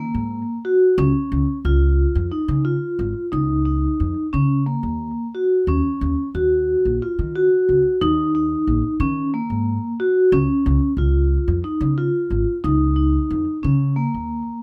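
Restless and urgent, this contemporary chamber piece moves in an uneven 7/8 meter, with a vibraphone played with medium mallets spinning metallic, ringing arpeggios colored by a slow motor vibrato and a vintage, band-limited tone. Beneath it, an upright bass plucked pizzicato on steel strings gives a woody bass line, and both instruments sit up front. Close, detailed microphones and light reverb frame this short section, cut from a longer piece, as its harmony shifts between Ebm, Bbm and Ebm7.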